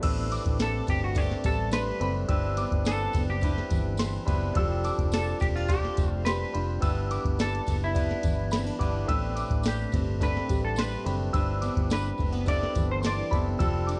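Indie and bedroom pop at 106 BPM in 4/4, dreamy and nostalgic, this brief excerpt moves through Am11, Cmaj9, F69 and G6 while a soft vintage rhythm box with a deep kick and tonal snare sits beneath a round, foam-muted electric bass and a fingerpicked jumbo acoustic guitar carrying ensemble chorus and warbly pitch drift. A barky, lightly overdriven tine electric piano and a crystalline FM synth bell with tremolo, analog chorus and slapback echo fill out the texture, while a jingly, compressed tambourine enters at 0.3 seconds in the background. From 0.6 seconds a clean, hollow-bodied semi-hollow electric guitar carries the melody through lush chorus and slapback echo, all in a dry mix coloured by worn, warbling cassette tape.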